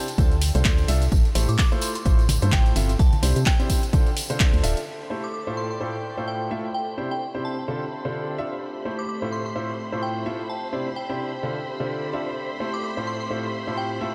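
Bittersweet and energetic, this piano house excerpt at 128 BPM in A minor opens with a clear grand piano riff with audible action noise and a glassy synth bell melody, joined by a punchy electronic kick, tape-warm drum machine handclaps and hi-hat, bright close tambourine and congas, and a hollow organ-like FM bass that all drop out by 4.8 s. Shimmering string machine violins with vintage sampler grit and an airy breathy pad then enter around 4.9 and 5.3 s, with the piano, bass, strings and pad all pumping with sidechain compression while a huge ambient reverb soaks the mix in a dreamy haze over Dm7, Am7, Fmaj7/A and Cadd9 chords.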